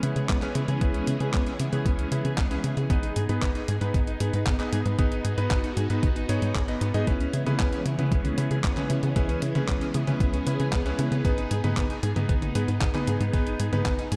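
The tight sequencer bass is a punchy, driving sawtooth-and-square line with a fast-attack filter pluck and tube saturation, running through this danceable, melodramatic italo disco excerpt in C# minor at 115 BPM in straight 4/4. A clean 12-bit drum machine supplies handclaps, hi-hat and toms from the start, and a thumpy, tape-warm electronic kick joins at 0.3 seconds, both sampler-style and re-recorded in a small room. A bright, clangy vintage electric grand piano cuts in with short stabs through a low-pass filter and delay, while a clean, picked electric guitar plays dark arpeggios with delay in the background. Behind them, a swirling, warbling string machine holds slow-attack chords treated with ensemble chorus and phaser. The harmony moves between C#m7 and G#m under a dark production with light reverb, and the music is cut from a longer piece.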